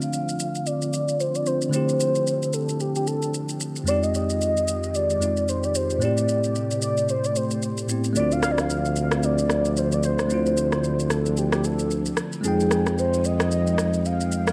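A 112 BPM amapiano groove in 4/4, swung at 58% on the sixteenths, is carried by a layered, produced electronic shaker and rim click. Over it, a velvety synth lead takes the melody between G4 and F5, sitting up front with a mellow sawtooth-and-triangle unison tone shaped by chorus, vibrato, portamento, a low-pass filter and analog delay. A bell-like tine electric piano adds bright, clean accompaniment through its own analog delay, while a vintage string machine of violas holds dark, full-bodied chords in the background, treated with ensemble chorus and a low-pass filter. At 8.2 s a warm tuba enters as an up-front, pop-style bass with light vibrato, ranging from D2 to F2. The harmony moves through Dm9, Fm9 and Am9 under a filter sweep that spans the whole excerpt, and the echo-heavy mix, touched with light reverb and digital ambience, lends it a deep, late-night mood.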